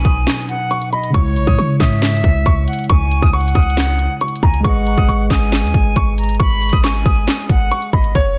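This short, melancholic, hard-hitting trap cut opens with every part sounding at once: a dark, mellow concert grand piano carries the melody through a low-pass filter and digital delay, with a silver concert flute tracing an airy second line alongside it. The flute has a metallic sheen, gentle vibrato and a soft attack, and its own delay trails behind each phrase. Beneath them, a clean tine electric piano supplies accompaniment, filtered and heard as if through its built-in speakers, while the harmony moves from B to C#m and settles on G#m at 4.6 seconds. The foundation is a deep, boomy 808-style bass with a pure sine tone, a fast attack and a decaying tail, locked with an electronic trap kit set up front in a half-time feel. That kit hits hard, with a clipped kick, a sharp snare, handclaps and crisp hi-hats re-recorded in a large room, and a brief break early on before the hats drop out at 8.2 seconds. 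The whole mix sits in a digital ambience with a dense, heavily limited modern master.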